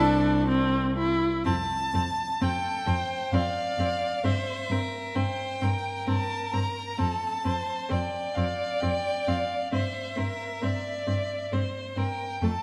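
A single bowed violin carries the melody up front, its focused vibrato sitting between E5 and Bb5 in this lyrical, warm slow movement for string quartet. It is cut from a longer piece, in F major at 66 BPM in a rubato 3/4, tuned to A4 = 445 Hz. A second violin traces a clear inner line beneath it, while a close viola fills in the accompaniment with its own vibrato. The cello, also placed up front, anchors the bass with a smooth, even tone and light vibrato. All four players sound together for the whole passage, moving from a brief opening into the main section at 1.5 s through C, F, C7/G, F and C/G. A scoring-stage reverb with a 1.7 s decay gives the quartet a wet, spacious bloom, and a layer of vinyl crackle adds an aged surface.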